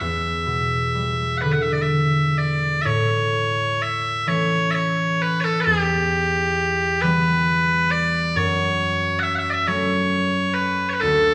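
This Celtic slow air in E dorian is mournful and haunting, moving freely in a rubato 6/8 at around 42-46 BPM, tuned to A4 = 444 Hz and cut from a longer piece. Loud, piercing bagpipes carry the continuous solo melody up front, while a mellow, fingerpicked concert harp rings beneath them with acoustic accompaniment through chords of Em7, A, Em and F#m. Both play throughout in a reverberant church or concert hall, with a new section arriving at 2.9 seconds.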